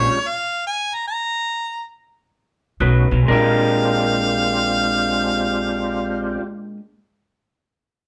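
In free time and slowing over the first 3.3 seconds, this soulful, laid-back blues fragment in Bb mixolydian opens with a brief band hit. The clear, close-miked harmonica then carries on alone, up front, its jazz-style lines full of scooped notes, tongue slaps and light vibrato, with a touch of overdrive. At 2.8 seconds the band returns: a gritty, percussive tonewheel organ with chorus vibrato and a slow rotary speaker, a slightly broken-up, lo-fi guitar riff through a small old amp, a woody, thumpy upright bass on gut strings, and a newly entering dark, clean lap steel sliding a second line, all sharing a moderate room reverb as the harmony moves from Bb6 through B9 to Bb13.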